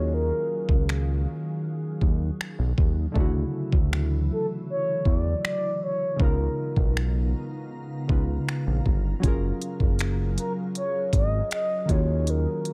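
A dry mix carries this romantic, smooth contemporary R&B excerpt at 79 BPM in F# major, where a mellow, horn-like synth lead with chorus, digital delay and vibrato sings its melody over round analog keys, a glassy, ethereal FM pad with ensemble chorus and its own reverb, and a fat, detuned sawtooth bass, while a tape-warm electronic kit of knocking kick, smooth hi-hat and finger snaps enters at 0.7 seconds, all moving through lush chords from D#m11 through Dmaj9 and C#13 to F#maj9.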